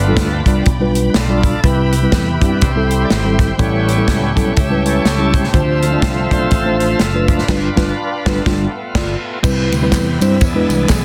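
A bright, shouting tonewheel organ takes the lead in this uplifting, reverent slice of uptempo gospel, soloing over a fast rotary speaker with vibrato and a clean key click until 9.4 seconds. It moves at 123 BPM in a swung 4/4 in C major, with chords cycling through G7, Cmaj7, A7 and Dm7 before landing on Cmaj7 and E7. A mellow tine electric piano carries the accompaniment, while a round, punchy fingered electric bass sits dark and low beneath it. A natural, up-front acoustic drum kit with a punchy kick, medium-tuned snare, hi-hat, ride and crash drives the groove, and the whole band hits an accent from 7.5 seconds. A lush, bowed string section holds smooth sustained chords in the background, then drops out at 9.4 seconds as close, dry tambourine and group handclaps enter. Light small-room reverb surrounds a dense, heavily limited modern master, and the passage is cut from a longer piece.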